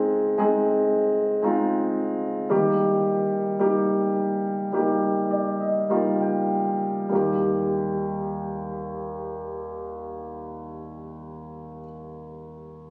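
Tender and emotional, this slow pop fragment in Eb major, tuned to A4 = 445 Hz, sits at 48-58 BPM in a straight 4/4, cut from a longer piece. A lone warm concert grand piano carries the accompaniment from Eb2 up to G5, its deep bass and open, up-front tone moving from Fm7 to Eb, with a fill from 4.7 to 7.1 seconds as the tempo slows. The sound is a phone recording made in the room, with a wet concert hall reverb, club reverb and compression.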